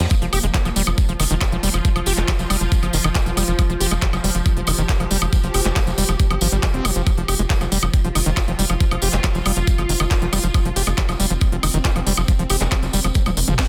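Hypnotic and intense, this psychedelic trance passage, cut from a longer piece, runs in a straight four with a dense, heavily limited modern sheen and light reverb. A knocking electronic kick sits up front from 0.1 seconds, alongside a layered electronic kit of cracking snare with soft clipping, crisp hats, handclaps, toms and woodblock, re-recorded in a small room, while a jingly acoustic tambourine stays in the background. Underneath, a tight sequencer bass drives with a punchy sawtooth-and-square filter pluck, fast in attack and decaying. Above it a squelchy, resonant acid riff carries saturated overdrive, 12-bit sampler grit, digital delay and sidechain pumping, its filter sweeping as it goes. A swarming, tense drone of detuned unison sines holds sustained chords with slow attack, granular warble, vintage grit and its own reverb, pumping along with the mix, and a drum fill closes the passage at 13.2 seconds.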